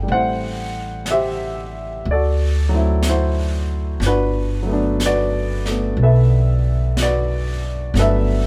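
Jazz with a late-night, intimate mood, this short excerpt moves at a slow 61 BPM swing in G major, passing through Am7, D9 and Gmaj9. An up-front, woody upright piano carries the accompaniment while a thumpy, gut-strung upright bass plays pizzicato underneath. A brushed drum kit with an airy, high-tuned snare and hi-hat sits further back, and light reverb gives the sense of a band playing live in one room.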